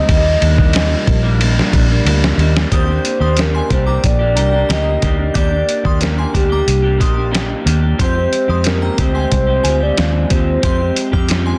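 Nostalgic and hazy, this short cut from a longer indie pop and bedroom pop piece moves at an easy 91 BPM in Eb major, resting on Ebmaj7 before shifting to Fmadd9 at 8.0 seconds. A soft, octave-layered synth lead carries the melody, its round, sub-octave tone shaded by phaser, subtle chorus, slapback echo and plate reverb. Beneath it, an electric guitar through a small old amp plays slightly broken-up, picked accompaniment with lush chorus and a warbly pitch drift, while a dark, foam-muted fingered bass sits up front. The lo-fi sampler-style drum kit sounds pitched down and muffled, with a thumpy kick, medium-tuned snare, hi-hat and ride, and a fill closes the opening section just before 2.7 seconds. A very quiet string machine holds sawtooth cello chords only until 2.7 seconds, when a glassy, crystalline FM bell enters as a high second line with analog chorus, slapback echo and plate reverb. 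The mix has light reverb and a dense, heavily limited modern master.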